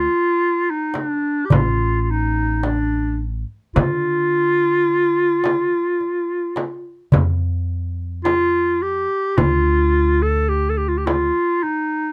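A warm clarinet sits up front as the solo voice, singing a longing, jazz-inflected melody with vibrato, scooped notes and a smooth top through the full 12.1 seconds. This short cut from a longer Turkish makam ensemble piece moves in a hypnotic, straight 10/8. An upright bass, also up front, anchors the low end from the start with pizzicato playing that sounds woody, growly and dark on steel strings. The darbuka enters at 0.9 seconds with a small, high clay-shell voice and natural skin, heard in a small room. A frame drum joins at 1.0 seconds, small and bright, played with soft hands, with a compressed, saturated edge. Light reverb and a dark, warm production bind the ensemble together.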